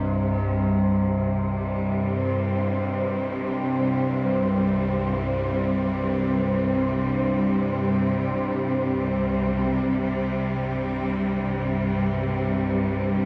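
An unsettling, ominous dark ambient drone in C minor opens at once with every layer sounding together over a C5 chord, drifting in free time. Up front, a tense, string-like drone sits low, its detuned sawtooth tone carrying a noise layer, slow attack, long release, its own reverb and a phaser. Beside it, a bright, intense studio cello section sustains bowed chords, with the drone and the cellos both colored by vibrato. Far back, an airy, breathy wind-like texture of tuned noise hovers with its own reverb, while very quiet, metallic tubular bells ring out solemn arpeggios until they fall away at 9.7 s. The whole excerpt, cut from a longer piece, is bathed in a wet, echo-heavy chamber reverb that lets the closing section, from 9.7 to 13.3 s, hang in murky space.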